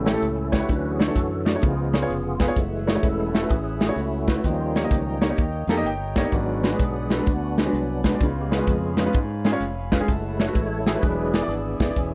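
A dry, close 1970s-style studio sound in a small room frames this fervent, soulful uptempo gospel excerpt at 128 BPM in F# minor with a swung 4/4 feel, where a fat, lightly overdriven tonewheel organ with key click, slow rotary speaker and chorus vibrato solos throughout over a natural baby grand piano that adds a fill at 5.4 seconds, a bright, direct fingered electric bass, an airy, up-front acoustic drum kit of hi-hat, medium-tuned snare and punchy kick, and a reedy pedal harmonium breathing in the background from 2.6 seconds.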